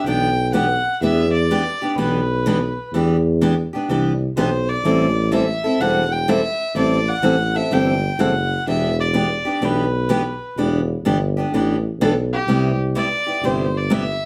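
Acoustic string swing in the jazz manouche style, this short fragment from a longer piece has a fiery, virtuosic mood and a lilting swung pulse in four. A single bowed violin carries the melody with a nasal, earthy tone, while a tuba supplies the bass line with scooped notes and a roomy, warm sound, both voices shaded by a light vibrato. A picked steel-string acoustic guitar fills in the accompaniment with a bright, fresh-stringed ring, and finger squeaks can be heard on its strings. The harmony moves from Em7 to Am7 at 4.8 seconds, back to Em7, and on to Cmaj7 near the close. The trio sits in a wet studio reverb, heard from further back in the room, and all three parts play together throughout the fragment.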